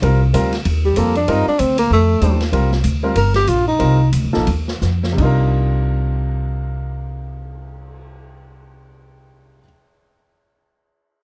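Dark, lightly reverberant production frames this brief cut from a longer modal jazz piece in C dorian, swinging in 4/4 at 163-192 BPM over a Cm11 chord with a hypnotic, searching mood. Close-miked tenor saxophone with light vibrato and a soft attack takes a solo from 0.9 to 4.1 seconds over woody, thumpy pizzicato upright bass and a baby grand piano of short sustain, both up front and playing from the very start. A natural-sounding big-band drum kit with a punchy kick, ride, hi-hat and crash supports the band as the tempo slows from 2.5 seconds, and it plays a fill at 4.8 seconds before dropping out at 8.0.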